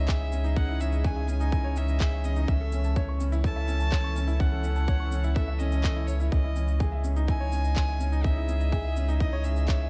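A tight, overdriven electronic kick and produced handclaps and shaker hold a straight 4/4 pulse in this cinematic, intimate piano-and-strings electronica cut from a longer piece, the kick carrying the echo of a large room while a round sine sub bass with tube saturation and sidechain pumping sits up front. A clear grand piano plays a riff over a cloudy, evolving granular pad that hangs blurred in the background on slow-attack chords moving from C#madd9 to A/C# at 2.5 seconds and back at 6.3 seconds. A single bowed violin carries the melody with a reedy, gut-string, period-style tone and light vibrato, and a barely audible electronic impact marks the opening 0.6 seconds.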